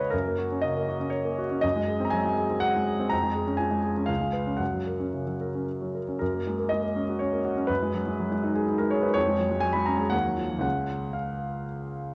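Heard through worn, warbling cassette tape with drifting pitch and a moderate recital-hall reverb, this short fragment of a romantic classical character piece in a rubato 3/4 features a clear, intimate, up-front grand piano playing solo for the full 12.1 seconds, its polished tone and audible action noise carrying a hopeful, passionate mood.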